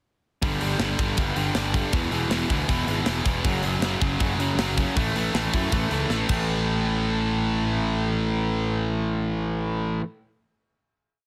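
A rebellious, energetic punk rock piece opens at 0.4 s with double-tracked overdriven electric guitar driving eighth-note power chords through G5, E5, F#5 and A5, a growly fuzz bass pushing punchy eighth notes beneath it, and a tight studio drum kit with bright cymbals keeping a fast punk groove until a fill leads into a final hit at 6.5 s, where guitar and bass ring out to about 10 s in a dry, dense, heavily limited mix.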